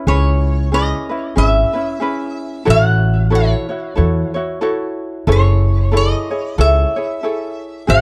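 A faint mains hum and cassette-tape grain sit under light reverb in this dreamy, sunny Hawaiian excerpt, cut from a longer piece and moving at 92 BPM in 4/4 with a gentle swing in C# minor. Up front, a metal-body resonator slide guitar carries the melody with fingerpicks, its tone bright, metallic and nasal through analog delay, while a light, fingerpicked ukulele with plate reverb supplies the accompaniment. A woody, warm pizzicato upright bass strung with steel anchors the low end through chords moving from C#m7 to A6 at 2.7 seconds and F#m9 at 5.3 seconds.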